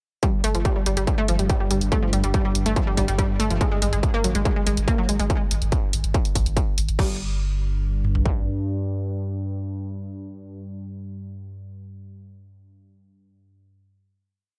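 A straight 4/4 pulse at 142 BPM drives this short, industrial peak-time techno piece, built on a distorted, overdriven four-on-the-floor kick with mid and floor toms sitting up front, while programmed overdriven hats and a crash run alongside until about 7.1 seconds. A deep, round sine sub bass moving between G1 and Ab1 fills the low rumble between the kicks, pumping against the sidechain through a low-pass filter. Over this, a bright, detuned sawtooth pluck repeats a 7-step sequence between F3 and Bb3 that drifts against the bar, colored by chorus and digital delay. The drop runs from 0.2 to 7.0 seconds, opening on a Gsus2 harmony. From 1.0 seconds, a moody, wave-folded ambient pad drone on G2, dark with ring modulation, a sub octave and its own reverb, swells beneath, then carries the final chord until 11.2 seconds. The whole track sits in a digital ambience, with a tuning reference of A4 = 437 Hz.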